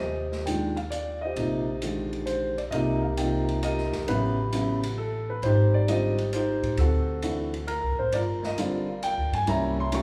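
A swinging 3/4 lilt at 133 BPM drives this playful, sophisticated jazz piano trio excerpt, cut from a longer piece and moving through rich chords such as Cm7, Abmaj7#11 and C7b9. An up-front concert grand carries the melody with a deep bass register, while a woody pizzicato upright bass on steel strings holds the low end and a soft-edged drum kit enters at 0.3 seconds with dark cymbals, hi-hat, ride and a medium-tuned snare sitting well back in the mix. A moderate recital-hall reverb and a small-room ambience surround the trio.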